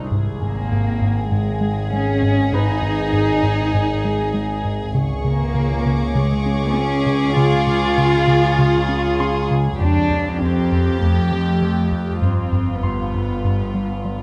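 A rubbery, hollow square-wave bass riff bounces through this ominous, mysterious cinematic excerpt at 99 BPM in 4/4, joined by an up-front cello section and a shadowy double bass section, both bowed sul tasto with light vibrato, while a resonant, ring-modulated drone with moving overtones, chorus and its own reverb sustains beneath. A studio violin section carries the intimate melody, a ringing, thumb-plucked concert harp sits in the background until 5.0 s and returns at 9.2 s, and a smooth-topped chamber violin section adds high texture through the middle stretch. The harmony moves from Abm to Db, Fadd9 and G7, captured with close, detailed microphones and light reverb.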